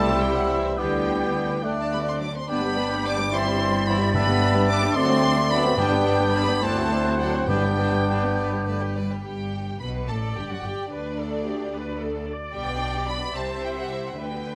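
Spirited and graceful, this quick classical-period movement for symphony orchestra moves in 6/8 with a rubato feel, and it is cut from a longer piece. A lush, expressive violin section carries the melody with soft-attack vibrato, set somewhat distant. A second chamber violin section, airy flutes, a clarinet and a present cor anglais play supporting lines. Violas and a punchy bassoon fill in the accompaniment, a dark, roomy French horn section holds sustained chords in the background, and focused cellos and double basses anchor the bass. Very quiet timpani struck with hard mallets join at 4.1 s, and the winds, horns and timpani all drop out by 9.0 s, leaving the strings to restate the opening section alone. Close, detailed microphones capture the orchestra within a moderate recital hall ambience.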